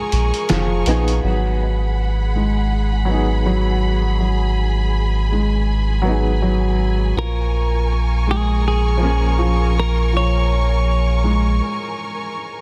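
Opening on a woody upright piano with tremolo and tape echo, lush bowed strings, a muted felt-muted piano whose arpeggios carry 12-bit sampler grit and a filter sweep from 1.2 seconds, and a brief clean, picked electric guitar melody that returns at 7.2 seconds, this cinematic, smoky trip hop excerpt at 81 BPM in G# dorian with a swung 16th feel rests on a deep, round dub sub bass sitting up front and a short burst of pitched-down, gritty sampler drums on hi-hat and snare, wrapped in light reverb and vinyl crackle before a break at 11.6 seconds.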